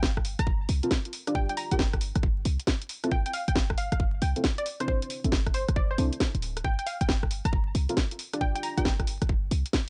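A glassy, crystalline wavetable pluck carries the melody through chorus and analog delay, riding over a bouncy, soulful two-step UK garage groove at 136 BPM in G dorian, swung on the sixteenths. Up front sit a tight, layered electronic kick, a garage kit with cracking snare, rim clicks and bright hats, and a short, punchy 808-style bass with a sine body and noise layer. From 0.8 seconds, deep, mellow, dark chord stabs, treated with phaser, chorus and delay, move from Gm11 through rootless voicings and suspended chords, and the whole excerpt has a dry, gritty hardware sound with vinyl crackle.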